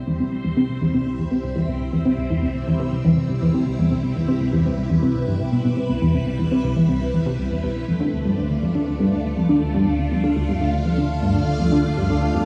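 Ambient, sequencer-driven space music with a cosmic, mysterious mood, moving in a straight 4/4 in this short section cut from a longer piece. Up front, a tight sequenced synth drives a low riff with a wave-folded, filter-plucked sawtooth edge, treated with chorus, phaser and analog delay. Behind it, a full string machine ensemble holds lush, vintage-sounding chords with a soft attack, its bright tone shimmering through phaser and ensemble chorus as it fades in over the whole 12.5 seconds. Deep in the background, a round analog bass adds a dark, evolving low end and also fades in gradually. The harmony sits on C before shifting to D minor at 7.9 seconds, and the echo-heavy mix rests in a moderate plate reverb with a hint of small-room ambience.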